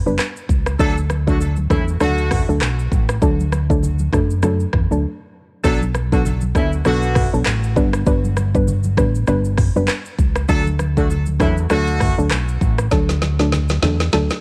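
A deep house drum kit with a deep kick, woody snare, smooth hats and vintage 12-bit sampler grit sits up front in this breezy, sunny afrobeats excerpt at 99 BPM with a 16th-note swing, carrying a punchy, dark fingered electric bass, a soft round pluck with chorus over chords moving from G to Bm7 and D, a mellow, distant horn section with delay entering at 0.8 seconds, and very quiet congas with soft hands, pausing for a break at 5.0 seconds before a drum fill from 12.9 seconds closes the excerpt in a dry sound.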